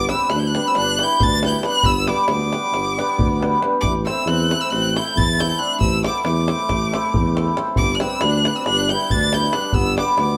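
Festive and virtuosic, this Balkan wedding band excerpt from a longer piece drives along at 273 BPM in eighths in a straight 9/8, set in G major and moving from G to A minor and back. A rich, intense violin with vibrato and a smooth top carries the high melody up front, while a reedy, sweet accordion with light tremolo tuning sits airy in the background on a second line, a shimmering, ringing cimbalom supplies hammered accompaniment, and a mellow, close-miked tuba holds the low bass. A deep, dry davul keeps the percussion close, and the whole band plays live together in a moderate stone room whose reverb lends a natural space.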